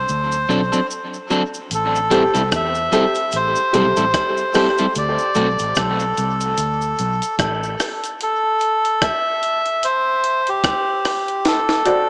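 A reedy, nasal melodica carries the melody up front through this deep, spacious dub reggae excerpt, its line trailing dub echo into a wet spring reverb and an echo-heavy mix with a small-speaker sound. A dark, round, foam-muted bass, a slightly broken-up picked guitar, a close cabasa set in the background, and woody, slightly detuned upright piano stabs fill out the swung groove, with the bass dropping out at 7.7 s. Gritty, compressed sampler-style breakbeat drums with a thumpy kick and high-tuned snare enter at 1.7 s and close with a fill at 11.4 s.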